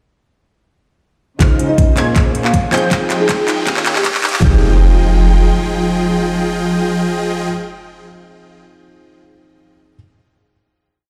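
Over a half-time pulse at 159 BPM in 4/4, a knocking pop kick and floor tom layer with metallic trap hats, hat rolls and claps through a build-up and drum fill from 1.4 to 4.4 seconds, while a deep, boomy 808-style bass follows the chord rhythm of Dbmaj9, Bbm9, Fm9 and Eb7 in F minor. This emotional, dreamy future bass piece centres on huge, detuned supersaw chords with syncopated pushes and a filter sweep, joined by a muted, intimate felt piano with delay, a rich string pad, a round soft-mallet marimba in short answering phrases, a tine-like thumb-piano pluck and a bright unison pluck doubling the chords an octave higher. Sidechain pumping breathes through the supersaws, piano, strings, marimba and bass; a riser and impact carry the music into a final Fm9 chord held from 4.4 seconds, with the piano ringing on to 10.0 seconds in a stone-room reverb.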